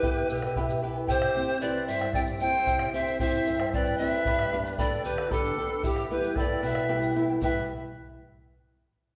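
Set in a reverberant recital hall or church, this short excerpt of Andean folk carries a festive yet wistful mood at 76 BPM in a straight 6/8, rooted in E minor. A bamboo pan flute sits up front with the melody, its tone breathy and reedy with a soft chiff at each note onset and gentle vibrato. Beneath it, a large wooden quena, close-miked and end-blown, adds a second line with its own luminous vibrato. The charango's double strings shimmer with some octave doubling as it is fingerpicked, while a small-sounding nylon-string guitar, also fingerpicked, supports the harmony and slips in a brief fill from 0.3 to 1.1 seconds. A deep, dark bombo heard in a small room anchors the pulse, and a grainy egg shaker, close and dry, joins at 0.2 seconds. The chords move from Em through C and G before returning to Em at 5.8 seconds.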